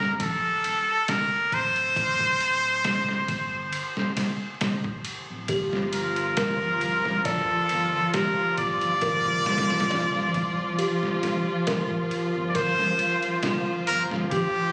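A nasal straight-muted trumpet carries the melody up front with tape echo over a round, deep dub sub bass and a gritty, pitched-down sampler-style drum kit with a thumpy kick, ride and snare in this dark, hypnotic trip hop excerpt at 68 BPM in G minor with a light 16th-note swing, before a distant, bowed chamber string section and a delicate, tinkling, slightly out-of-tune music box (both roughened by vintage 12-bit sampler grit, the music box also echoed on tape) join at 5.5 seconds, all heard as if captured on a phone in the room, with club reverb and vinyl crackle.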